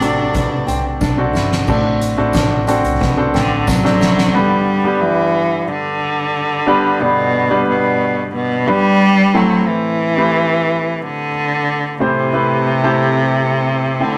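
This piano-driven pop excerpt feels uplifting and hopeful, moving at an unhurried, steady pace in four. A rich, smooth bowed cello carries the melody up front with close, even vibrato, while a warm concert grand piano accompanies with deep bass, audible action noise and an intimate, polished presence. In the opening stretch, a soft-mallet drum kit with a boomy kick and fat snare plays two fills, joined by a dark, round, foam-muted electric bass, a fingerpicked steel-string acoustic guitar riff in the background, and a jingly, very quiet tambourine. Those four parts drop out by 4.3 s as the harmony settles from D7 onto G, leaving cello and piano alone to later move to Am7. The sound has the rough character of a rehearsal-room recording, with tube saturation and a moderate small-room reverb.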